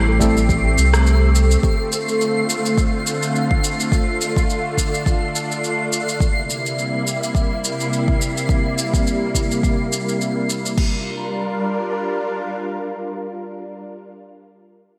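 A silky string machine opens this sunset chillout excerpt with slow-attack chords, their vintage pulse and sawtooth tones softened by phaser and ensemble chorus. A round, sine-based sub bass, up front and thickened by tube saturation, sounds under them only until 1.6 s. A faint granular texture twinkles high above with an octave-up shimmer, its FM sparkle wrapped in its own reverb. From 0.2 s a deep, layered electronic kick joins a quiet deep house kit of crash cymbal, rim click and shaker, both tape-warm and re-recorded in a small room, the kit carrying gated reverb on a gently swung groove. The harmony drifts through minor and dominant seventh chords before settling on Gm7 at 10.8 s, where the sparkle and, a moment later, the drums fall away and the mellow strings hold on alone. A lush hall and a bright 1980s-style digital sheen give the whole mix a smooth, warm glow.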